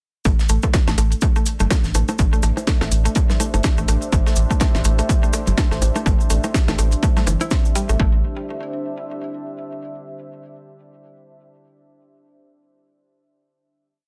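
An up-front, overdriven electronic kick pounds four-on-the-floor at 124 BPM in this quirky, sparse minimal techno piece in A minor, joined by a rubbery, hollow square bass rolling in staccato with sidechain pumping, a woody mallet-like pluck cycling a 3-step loop that drifts against the bar through chorus and delay, cracking snare and smooth programmed hats, a very quiet looped breakbeat kit, grainy hand-played cabasa sixteenths, background bongo, cowbell and conga blips in cross rhythm, and a deep, moody detuned pad arriving at 1.9 seconds that holds a final chord from 8.0 to 9.9 seconds, all in a dense, heavily limited mix with little reverb.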